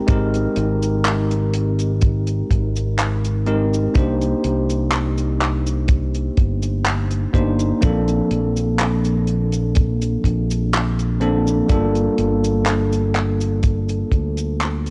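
A lightly swung sixteenth-note groove in 4/4 drifts along at a slow, unhurried pace, anchored by a tight, dry kick with a rolled-off top that sits up front and carries a touch of 12-bit sampler grit and studio reverb. Around it, a damped 70s acoustic kit adds cabasa, handclaps and hi-hat, sitting lower in the mix and sharing that same gritty, reverberant sheen. A fingered electric bass, bright, direct and amped, holds the low end close to the listener, while a bell-like tine electric piano supplies clean, up-front chords softened by subtle chorus, analog delay and a vintage sampler crunch. The harmony glides through Abmaj9, Cm9, Bbmaj9 and Gm9, giving this woozy, nostalgic vaporwave fragment a hazy, dreamlike drift, all wrapped in light reverb, small-room ambience and a cassette-tape character. Cut from a longer piece, it fades out from 13.0 seconds, with the kick dropping away at 14.3 seconds, just before the end.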